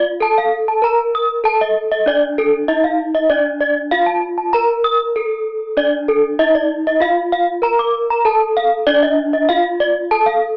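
This short excerpt has the boxy, lo-fi sound of a home cassette recording with an AM radio quality, set in a small, reverberant booth. It is a gamelan piece in D pelog at 97 BPM in a straight 4/4, brilliant and shimmering in mood. Two bronze metallophones struck with horn mallets sit up front. One carries the melody between D4 and Bb4, and the other spins bright arpeggios reaching from A4 up to Eb6 slightly sharp. Both ring with the shimmering beats of paired tuning and carry a plate reverb and tape colour. The arpeggio part is close-miked, dry and full, and sits a touch louder than the melody. The same section plays twice, with a brief break from 4.9 to 5.8 seconds before the repeat. The recording is cut from a longer piece and ends at about 10.6 seconds.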